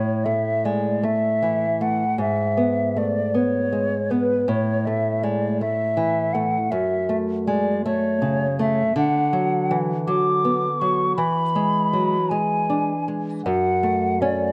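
A romantic duo for flute and classical guitar in A major, this tender passage moves at a rubato 53 BPM in dotted quarters of 6/8, cut from a longer piece. The silver concert flute carries the melody with a hollow, pure tone, vibrato and a crisp attack, while the fingerpicked nylon-string guitar sits up front with a small, woody, dark sound of old strings, accompanying through chords such as F#m7, Bm/D and E7. Both instruments play throughout the 14.5 seconds, framed by light reverb.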